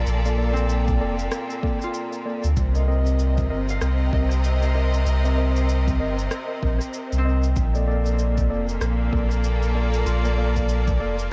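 Meditative and spacious, this ambient dub excerpt moves at 96 BPM with a swung sixteenth-note feel, as lush, vibrato-rich symphonic strings hold sustained chords over a round, sine-like sub bass sitting up front. Mellow tine electric piano stabs, fingerpicked harp arpeggios ringing in the background, and an electronic cabasa and rim click all trail dub echo, while a deep, tape-warm electronic kick drum enters at 0.9 seconds from behind the mix. The harmony drifts from Bbmaj7 to Cm7 and returns to Bbmaj7 at 7.6 seconds, all in a dry, close-sounding space.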